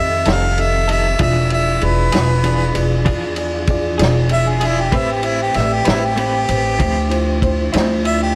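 Slow blues in a straight 12/8, soulful and smoky, with a warm harmonica carrying a jazz-inflected solo up front, its scooped notes, light vibrato and soft attack touched with slapback echo over chords moving from F7 through E7b9 to Am9 and Dm9. A dark, intimate concert grand with audible action noise and a clean, compressed electric guitar with tremolo add echoed accompaniment, while a flute-like tonewheel organ holds soft chords through a slow rotary speaker in the background. A woody, growly pizzicato upright bass sits up front beside a tight soul drum kit of kick, snare and dark ride cymbal, all wrapped in a lush hall reverb that gives this excerpt a big arena sound.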